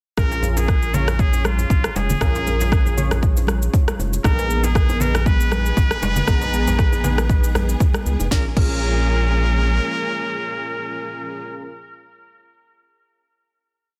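Afro house with a warm, spiritual mood, built on an overdriven four-on-the-floor kick, a programmed kit of cabasa, rim, sharp snare and crash, and close, bright congas with a very quiet djembe carrying a hand-drum cross rhythm. A round, deep analog bass with long gliding notes and detuned, mellow analog keys in syncopated stabs both pump against the kick, while a nasal, muted trumpet plays call phrases with vibrato over the top. Lush bowed strings join at 4.2 seconds as a sustained pad, and the groove gives way at 8.3 seconds to a final held chord on keys, strings and trumpet.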